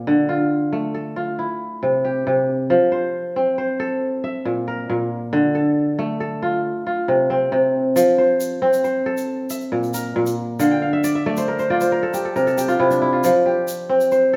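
A ringing, crisp kora opens this joyful, hypnotic cut from a longer West African traditional piece, fingerpicking up-front arpeggios in F major at 91 BPM in a straight 12/8 over chords like Dm, C and F, with a grainy, close egg shaker joining at 8.0 seconds and a kora fill at 10.6 seconds, all heard live in one large studio room with a lush reverb.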